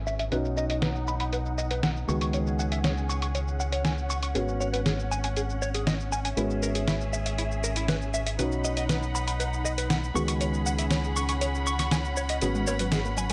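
An up-front fingered electric bass with an envelope filter anchors this sensual, groovy nu-disco excerpt at 119 BPM, its direct tone sitting low and warm beneath a progression that moves from B through C#7sus4, G#m7 and E6/G#. A dusty, sampler-style drum kit keeps a straight 4/4 feel with a fat, gritty snare, hi-hat and shaker, all compressed and softened by low-pass filtering. A bright, clean electric guitar recorded direct plays a picked riff dressed in subtle chorus and delay, while a lush symphonic string section holds bowed chords with vibrato, roughened by vintage 12-bit sampler grit; both guitar and strings carry a filter sweep throughout. A dark, boxy baby grand piano adds intimate accompaniment with audible action noise, short sustain and delay. Near the close, an analog pluck enters at 12.4 seconds with chorused, dub-echoed arpeggios over a G#m11 chord, and a close, dry cowbell joins in the background at 12.7 seconds, all set in a light studio reverb.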